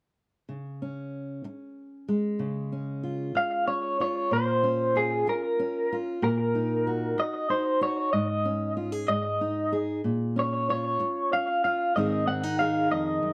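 Acoustic folk in a gentle 6/8, this hopeful and peaceful passage is cut from a longer piece. A fingerpicked steel-string acoustic guitar opens at 0.5 seconds with a full-bodied, up-front accompaniment that sits in the lower and middle register. At 3.4 seconds an electric guitar enters to carry the melody, its picked line coming through a small old amp with a slightly broken-up, compressed, lo-fi tone colored by tremolo and slapback echo. The electric sits a touch louder than the acoustic, and both guitars play on until 13.3 seconds, while the harmony drifts between major chords and softer minor ones such as Bbm and Ebm/Bb. The sound is dry and close, like a 1970s studio recording, with only light reverb around the duo.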